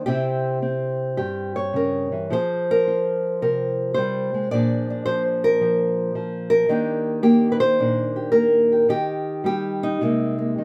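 A loose swing at 109 BPM in 4/4, pulled about with rubato, carries this short excerpt of solo jazz in Eb major, its mood playful and warm. A fingerpicked nylon-string guitar plays alone, small and up front in light reverb, ranging from G2 to D5. The harmony moves from C7b9 through Fmadd9 and Bb7 to settle on Ebmaj7, then touches Cm7b13 at 10.0 seconds as the fragment breaks off.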